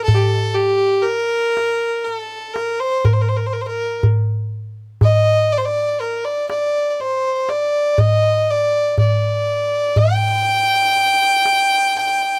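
Set in a straight 10/8 at 121 BPM counted in eighths, this short passage cut from a longer Arabic maqam ensemble piece moves in G minor with a melancholic, longing mood. A single bowed violin, dark and earthy with light vibrato and a smooth top, carries the melody within a range of G4 to G5, up front across the whole 12.4 seconds. Beside it a deep clay-shelled darbuka with natural skin, played with soft hands and sounding close and dry, sits equally forward, all captured by close, detailed microphones in light reverb.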